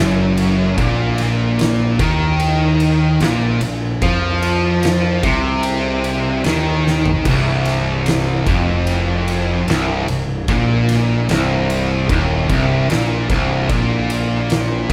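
Light reverb surrounds this slow stoner and doom metal excerpt, with the band captured playing live in one room. At 74 BPM in a straight 4/4 and C minor, the mood is hypnotic and sludgy as two fuzz guitars grind out the riff in a low register. The upfront guitar is bright, compressed and double-tracked, while the thick fuzz guitar sits in the background. Beneath them, a fingered electric bass is overdriven, growly and punchy. The oversized, low-tuned acoustic drum kit comes in at 0.4 seconds, with a punchy kick, fat snare, dark cymbals and a saturated, gritty sound in a pumping stone room. Around a Bb5 chord, a drum fill at 6.9 seconds leads the riff onto C minor at 7.3 seconds.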